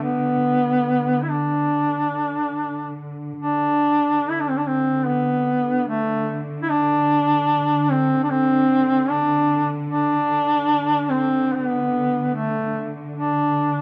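Caucasian folk lament, solemn and longing, moving in a rubato 4/4 around 73 BPM. A solo duduk carries the melody up front with a warm, roomy folk vibrato, while a muted symphonic cello section, bowed con sordino, sustains a dark, veiled drone on D3 with soft attacks and light vibrato. Close, detailed microphones and light reverb frame this short excerpt, which shifts into a new section at 3.4 seconds.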